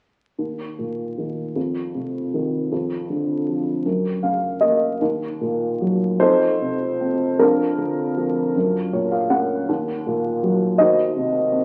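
A dark, woody upright piano, slightly detuned and close to the ear, carries this brief wistful fragment of a longer lyrical classical solo. Its mellow, vintage voice rings with long sustain across a span from Eb2 to Gb5, moving in a lilting 6/8 with uneven, rubato beats that give the melancholic line a searching, unhurried feel. Two lone melody notes open the passage before minor and seventh harmonies settle in, and the piano adds short fills at 3.8 and 8.6 seconds as the music passes from its opening phrase into a second, longer section. The instrument sits in a moderate recital-hall reverb, and the sound carries the crackle and age of a very old 78 rpm record. The harmony comes to rest on a darkened minor sixth chord, leaving the mood pensive and unresolved.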